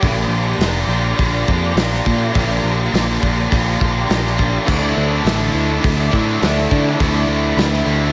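From the first second, a short cut of wistful, blissful shoegaze-leaning dream-pop rock arrives all at once: a loose indie drum kit with a punchy kick, a medium-tuned snare and dark cymbals, a growly picked electric bass sitting up front, and two overdriven guitar riffs. One guitar has a biting edge thickened by analog chorus, while the other sounds raw and lo-fi, its overdrive trailed by reverse reverb. Behind them, a silky analog string pad holds sustained chords, its slow-attack sawtooth tone shimmering with ensemble chorus, phaser and vibrato. The harmony rests on Bb6 before shifting to Dsus2 at 4.7 seconds, where a bright, double-tracked distorted electric guitar joins in the background with a riff of its own. The drums drop out at 7.8 seconds while the other parts ring on briefly, all set in a small room with light reverb and a mellow, rolled-off top end.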